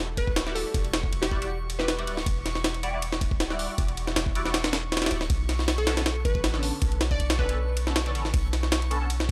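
A straight 4/4 jungle beat at 158 BPM propels this raw, atmospheric drum and bass fragment in E dorian, where a compressed, pitched-up sampler-style kit with a thumpy kick and high-tuned snare sits up front over a deep, mellow sine 808-style bass, while nasal band-passed chord stabs with phaser, ensemble chorus and dub echo move from Em9 to Bm9 at 5.3 seconds, a glassy wavetable pluck with chorus, cassette tape and dub echo appears at 0.2 and 5.8 seconds, and a reversed, dreamy granular texture with built-in reverb hovers in the background, all captured in a dry, gritty hardware recording.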